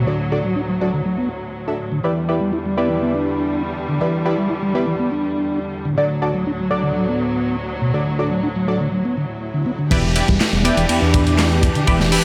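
A straight 122 BPM breakbeat groove in E minor, funky and energetic and cut from a longer piece, opens on lush bowed symphonic strings with sidechain pumping, a flute-like tonewheel organ riff through a fast rotary speaker and low-pass filter, and nasal band-passed sawtooth chord stabs with chorus, phaser and dub echo over D and Em7 chords, until a very quiet electronic swell and downlifter at 9.3 seconds leads into a drop at 9.9 seconds, where a gritty, up-front breakbeat kit with dark cymbals and a tight kick, a menacing detuned saw bass with tube saturation, and background analog drum-machine handclaps and hi-hat all arrive in a small room with light reverb.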